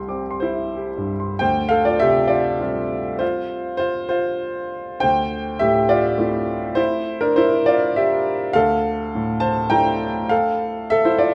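Melancholic and intimate, this neoclassical minimalist piano excerpt moves at 101 BPM in 3/4 with a rubato feel, tuned to A4 = 442 Hz. A lone upright piano, spanning C2 to D6, sits up front with a woody, vintage character and long sustain, set in a moderate concert hall reverb. The harmony begins on C before settling onto Fsus2/D at 1.4 seconds and Am7/D at 5.0 seconds, the passage cut from a longer piece.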